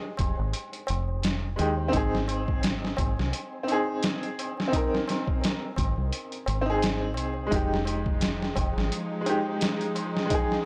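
Dark and brooding, this swung trip hop fragment sets a bright, woody upright piano with tremolo and tape echo over a compressed, gritty sampler-style drum kit with a thumpy kick, a round, punchy dub bass with tube saturation and a low-tuned tabla with a short ring, before a lush bowed string section with vibrato arrives at 7.5 seconds, the whole captured in a dry small room with transformer saturation.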